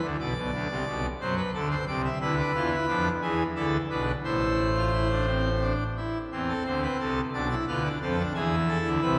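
A full pipe organ opens this brief cut from a longer baroque-style fugue in A minor, its three voices moving in a serious, driving 6/8 at 59 beats per minute to the dotted quarter. Played solo and placed up front, the organ's bright mixtures give it a majestic, brilliant sound with a romantic voicing, spanning deep bass notes to ringing treble. The harmony presses through diminished chords toward E7 before settling on A minor, and a new section begins at 6.3 seconds, all within a long, wet church reverb.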